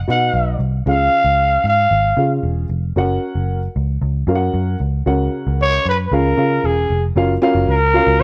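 A raspy, growling trumpet with scooped notes and vibrato leads this joyful, uptempo 1960s-style soul excerpt, sounding roomy and bathed in plate reverb as it plays from 0.1 to 2.4 seconds and returns at 5.6 seconds. A dark, woody upright piano with audible action noise and a slightly detuned, intimate character, also touched by plate reverb, fills in the accompaniment. Beneath them, a round, foam-muted picked electric bass sits up front, and the harmony moves from B and C# through F# before settling on an F#maj7.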